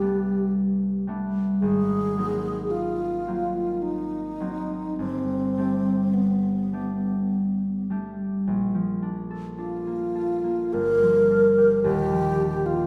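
A wooden-headed alto flute carries the melody up front, its airy, tongued tone shaded with vibrato and lifted highs, in this luminous, dreamy impressionist classical duo cut from a longer piece. A concert harp accompanies throughout, thumb-plucked and ringing with a warm, acoustic body, moving through lush extended chords at a slow 53 BPM in a rubato 3/4 with uneven beats. The pair sit in a wet scoring-stage reverb heard from further back in the room, and at 8.5 seconds the music settles into Bb major for its second section.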